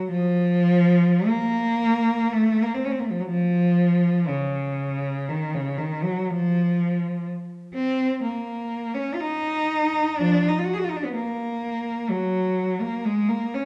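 A clear, distant bowed cello plays alone, smooth and even with vibrato, in this lonely, yearning classical excerpt in Bb minor, moving freely in rubato around 61 BPM in 4/4 and ranging from Db3 to Ab4, set in a dark, wet recital hall reverb over 13.7 seconds cut from a longer piece.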